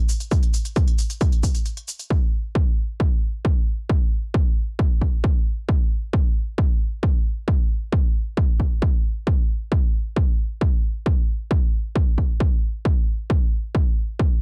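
Hypnotic and industrial, this techno fragment in straight 4/4 opens with smooth, layered electronic hi-hats and shaker that pump under sidechain compression, sounding tape-warm and re-recorded in a small room before a brief break at 1.7 seconds and falling away at 2.1 seconds. A heavy, layered electronic kick drum sits up front from 0.3 seconds onward, carrying the rest of the cut on its own until 14.3 seconds. The mix is dry and gritty, with the character of a hardware recording on cassette.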